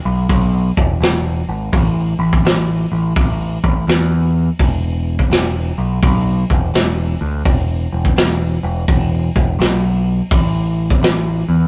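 A swung eighth-note feel at 84 BPM in 4/4 drives this short excerpt of blues rock with a southern rock edge, set in E mixolydian and carrying a raunchy, driving mood. A growling picked electric bass opens at 0.1 seconds, its bright, overdriven amped tone sitting up front as it holds the low end between E1 and E2. A vintage acoustic drum kit joins at 0.3 seconds with hi-hat, a punchy kick and a medium-tuned snare, its mid-forward sound carrying a rolled-off top and placed close to the listener. The two parts share a moderate small-room reverb that gives the rough rehearsal-room recording a lively, unpolished feel. Cut from a longer piece, it runs as a single section until the bass ends at 11.7 seconds.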